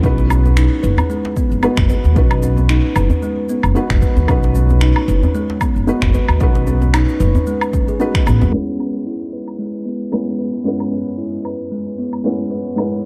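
A gently swung 4/4 groove opens this organic downtempo excerpt, built on a punchy, overdriven electronic kick and a produced layer of electronic shaker, woodblock and finger snaps, with a deep, close and dry djembe joining just after the start and sitting in the background. Up front, a woody pizzicato upright bass with steel strings pumps against the kick, while a kalimba spins hollow, ringing arpeggios with a soft fingertip pluck through low-pass filtering and tape echo. Beneath it, a felt-muted upright piano adds intimate accompaniment with short sustain and audible action noise, also pumping and passing through tape echo. The harmony sits on B before moving to C#m7 at 8.5 seconds, where the bass, kick and djembe drop away and filter sweeps wash over the kalimba and piano, leaving the shaker layer to carry the pulse until the cut near 13.1 seconds. The production is dark and earthy, with light reverb and a small room ambience giving the whole a warm, close-up feel.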